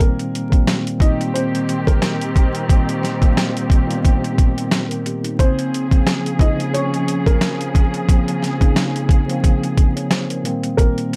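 Vinyl crackle sits over a dry, close sound with little reverb in this dark, tough boom-bap hip-hop excerpt, which moves at 89 BPM in 4/4 with a light swing on the sixteenths. A gritty, compressed, pitched-down sampler kit leads the mix up front, with a thumpy kick, a medium-tuned snare and hi-hat. A mellow tine electric piano, clean and heard through its built-in speakers with a cassette-tape tint, carries the accompaniment. Above it, a worn, woody upright piano plays the melody; it is boxy, slightly detuned and intimate, with short sustain, audible action noise, filtering and delay. A lush bowed string section adds filtered stabs with vibrato and a smooth top from 1.0 to 10.4 seconds, while the harmony moves from Cm7/Bb to Bbmadd9 at 5.4 seconds and back to Cm7/Bb at 10.4 seconds.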